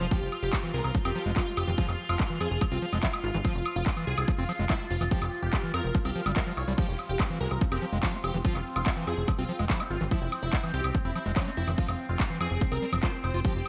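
Psychedelic trance at 144 BPM in F harmonic minor, driving and trippy, with an overdriven, up-front kick and a techno kit of crash, handclaps, smooth hats and woodblock alongside a punchy, wave-folded analog bass, while a squelchy acid riff sits in the background, detuned supersaw stabs carry the melody through phaser and analog delay, a chorused drone with moving overtones holds sustained chords, a very quiet metallic wobble bass surfaces from 0.5 to 3.1 seconds and again from 7.2 to 9.3 seconds, and a brief electronic swell appears at 6.1 seconds.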